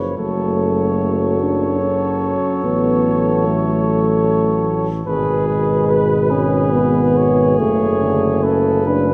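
A classical, hymn-like brass band piece in F# minor at 72 BPM in a rubato 3/4, yearning and melancholic, where a mellow cornet with light vibrato sings the melody over a distant flugelhorn second line, a dark euphonium entering at 0.2 s, a very quiet, warm trombone and an up-front tuba bass, all moving through F#m, F#m/A and C#5/G# chords before settling back on F#m, bathed in a wet church reverb in this 9.1-second cut from a longer piece.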